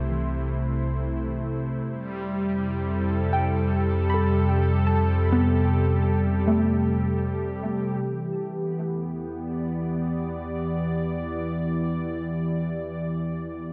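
Spacious and serene, this ambient excerpt sets a warbling, detuned analog pad of sustained chords up front over a deep, ring-modulated analog bass that fades in from 8.0 seconds, while a dark, wave-folded pluck spins arpeggios through chorus, delay and vintage 12-bit sampler grit until 9.8 seconds, all carried by a moderate concert hall reverb as the harmony drifts from C6 to Fadd9 and settles on Em7.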